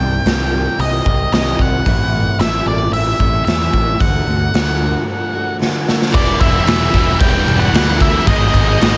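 A light reverb surrounds this brooding, cathartic quiet-loud alternative rock excerpt in E minor, moving at 112 BPM in a straight 4/4. An up-front, dark octave-fuzz lead guitar carries the melody over a bright, full-bodied fingerpicked jumbo acoustic guitar playing arpeggios in the background, both touched with analog delay. Beneath them, a fuzz picked electric bass sounds punchy and overdriven, while a raw garage drum kit enters at 0.3 seconds, up front and gritty in a pumping stone room, with a punchy kick, medium-tuned snare, hi-hat and crash. A drum fill at 5.6 seconds leads into the loud half at 6.1 seconds, where the acoustic guitar stops and two background riff guitars take over, one sludgy and overdriven, the other tight and bright with distortion. The chords run from Cm through Am and D, then land on Em and G#m for the heavier stretch.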